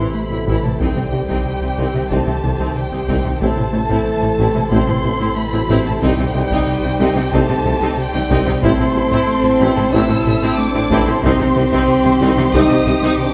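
Mellow French horns carry sustained chords in the background of this tense, vast hybrid orchestral and electronic film cue, cut from a longer piece and moving at 92 BPM in a straight 4/4. Above them, a lush violin section sings the melody with expressive vibrato, while a second, more distant violin line and a smooth, even viola section fill the middle. The harmony alternates between Am and Cm, propped up by a very quiet, airy pad with a flute-like, chorused shimmer and a slow attack. Down low, a rubbery square-wave bass plays a bouncy, filter-plucked riff over a deep, clean sine sub, and very quiet cellos join a vintage-toned solo tuba and distant double basses on the bass line, with the tuba and basses entering at 0.5 seconds. A close taiko ensemble struck with heavy sticks sits in the background, and a lingering scoring-stage reverb gives the whole cue a sense of great space.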